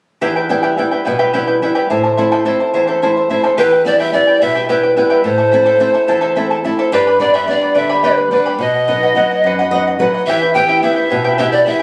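Melancholic and wistful, this Andean folk excerpt in E minor moves at 72 BPM in a straight 6/8, with a bright, shimmering fingerpicked charango and a fingerpicked flamenco guitar, its finger squeak audible, laying down an up-front accompaniment from 0.2 seconds before an airy, woody pan flute with vibrato, a crisp attack and chiff takes the melody at 3.6 seconds, a nylon-string guitar fill at 9.4 seconds passing over chords that turn from Em and Am through G and B back to Em in a dry sound with little reverb.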